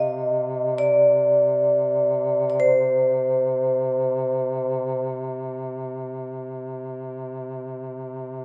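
Unfolding in free time, this short fragment of a Caucasian folk lament in C minor carries a longing, mournful mood, with the tuning set slightly low at A4 = 437 Hz. A vibraphone struck with medium mallets carries the melody up front, its metallic, ringing tone shaded by a slow motor vibrato as it moves between C5 and Eb5. Beneath it, a mellow duduk holds a low drone on C3, played in a folk style with vibrato and scooped notes that give it a vintage character. The vibraphone falls away at 5.0 seconds, leaving the duduk to sustain by itself until the fragment closes at 8.4 seconds. A moderate recital hall reverb with a 1.6-second decay surrounds the sound with a sense of open space.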